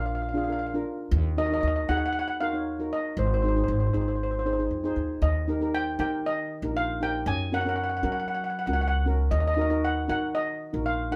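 Calypso at 117 BPM with a bouncy, festive mood, cut from a longer piece: a shimmering lead steel pan struck with hard rubber sticks carries the up-front melody over a mellow, soft double-seconds pan played with soft rubber sticks, while a woody, growly pizzicato upright bass anchors the low end through chords moving from Bb and Ebm to Gb, the band captured live together in a boxy small room with moderate reverb and a section change at 5.2 seconds.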